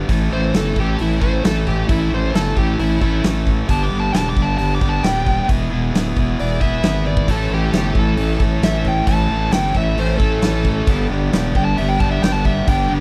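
A dry, close 1970s-style studio sound frames this sunny, confident classic rock passage, cut from a longer piece and driven by a straight, steady beat. A bright, cranked stack guitar picks an overdriven riff from the start while a thick, growling FM bass sits up front beneath it, and a big-room acoustic drum kit with a fat snare, punchy kick, hi-hat and toms gives the groove its arena weight. Across the whole passage a dark, smooth lead guitar plays an overdriven solo with a slapback echo, moving over a chord sequence of A, G, E, then back to A and G. A drum fill at 7.1 seconds marks the turn, and at 7.3 seconds a warm, hollow-body semi-hollow guitar joins in the background with its own picked, overdriven riff, thickening the texture through to the end.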